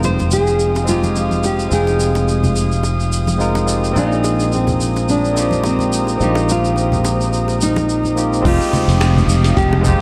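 A dark, fingerpicked nylon-string guitar melody leads this wistful sunset chillout excerpt in F minor at 107 BPM with a swung 16th feel, carried by a barky tine electric piano, an airy, breathy pad with shimmer reverb, a growly, up-front fretless bass, a dusty, gritty sampler-style kit of cabasa, congas, finger snaps and hi-hat, and very quiet hand-played bongos and congas, all moving over Fm9 and Bb9sus4 in a lush hall before a deep electronic kick and a downlifter arrive at 8.4 seconds.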